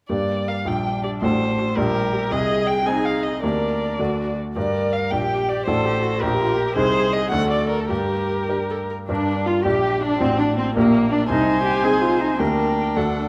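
Recorded with close, detailed microphones in a moderately reverberant scoring stage, this brief excerpt from a quick classical-period movement for piano quartet in G minor moves at 108 BPM in a rubato 6/8, urgent and dramatic in mood. A brilliant, up-front grand piano carries the accompaniment from the start beside the dark, veiled tone of a single muted violin playing the melody with vibrato, while a soft-attacked muted viola joins at 0.5 seconds and a muted cello with a smooth top adds a second line from 0.7 seconds. The harmony circles G minor through Ab/C and D chords, and the opening phrase returns at 9.1 seconds.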